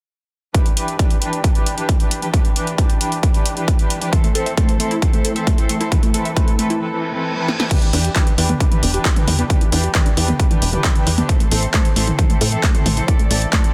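A dense, heavily limited modern master with digital ambience frames this driving, bittersweet uplifting trance passage in E minor at 134 BPM, cut from a longer piece, where veiled, con sordino strings hold sidechain-pumped chords over a punchy, layered kick placed up front and a tape-warm analog drum machine with crash, handclaps, hi-hat, snare and toms. At 4.1 seconds a lush, detuned unison pluck enters with arpeggios through digital delay, and after a short break with a reverse cymbal and a drum fill at 7.5 seconds, a tight sawtooth sequencer bass with tube saturation and ring modulation arrives at 7.9 seconds. Meanwhile a filter sweep runs across the pluck as the harmony moves between Em7 and Am.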